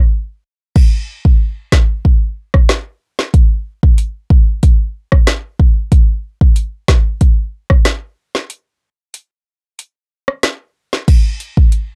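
This short cut from a longer dancehall track has a dark, warm production with little reverb, so the drums sit dry and up front. At 93 BPM in a straight 4/4, the mood is bouncy and hypnotic. An electronic afro-pop drum kit carries the whole piece, entering at 0.8 s and running to 11.9 s. It combines a deep kick, woody snare, rim click, metallic hi-hats and crash cymbal. A break falls between 8.5 and 11.1 s, near the close of the single section, before the kit plays on to the end.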